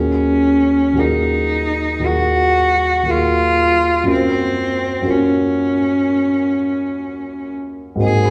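The rhythm moves in a free, rubato four, stretching and yielding at will, which gives this brief impressionist classical excerpt a mysterious, wistful air. A single bowed cello carries the melody up front, its tone rich and intense with vibrato and a smooth upper register. Beneath it, a concert grand piano supplies the accompaniment in a dark, mellow voice with deep bass, an intimate, vintage character and audible action noise. The harmony rests on an Ebm11 chord before shifting to Gbmaj7 at 4.1 seconds. Both instruments play throughout the 8.3 seconds, set in a wet recital hall reverb that is heard from further back in the room.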